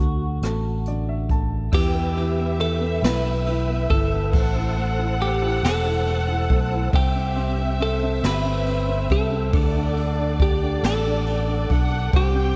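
A romantic, heartfelt six-eight pop ballad opens on a bright, twangy twelve-string electric guitar melody with delay over a woody upright piano that plays a fill from 0.4 to 1.7 seconds, a round, punchy fingered electric bass and a brushed jazz kit with dark cymbals and a boomy kick, before a bowed violin section with delay and a soft, flute-like tonewheel organ with fast rotary speaker join at 1.7 seconds as the chords move D, Em, Am, C and D, the whole bathed in a dreamy, reverb-soaked mix.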